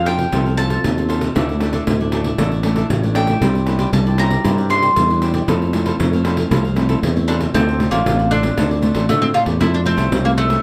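A mellow, round mandolin solos up front through the first 7.5 seconds of this playful, festive samba and choro excerpt at 116 BPM, over crisp picked cavaquinho, a fingerpicked classical nylon-string guitar in the background, a growly, bright fretless electric bass sitting up front and a jingly, distant pandeiro played with hard hands, all in a dark small-room production that moves from F major to D minor at 7.5 seconds.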